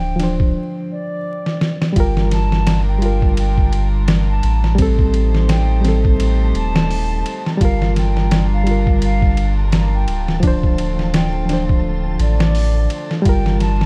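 Built on a swung sixteenth-note groove in 4/4, this dark, brooding trip hop excerpt moves at an unhurried pace, with a sampler-style drum kit of hi-hat, kick, snare and ride that sounds compressed, pitched down and gritty, its thumpy kick sitting up front. The drums come in at 0.2 seconds, break off briefly, and return after a fill that runs from 1.4 to 2.0 seconds. A round analog bass stays deep and close throughout, while a reedy, worn and slightly out-of-tune electric piano carries the chords through its built-in speakers with tremolo. Above them a distant, hollow concert flute plays the melody with vibrato, trailed by dub echo, and from 2.0 seconds a soft, floating chamber string section adds sustained chords roughened by 12-bit sampler grit. A faint flickering, granular texture drifts in the background from 2.6 seconds, and the whole mix is dry, dark and dusted with vinyl crackle as the harmony moves from Dm7 through Gm7 and Am7b5.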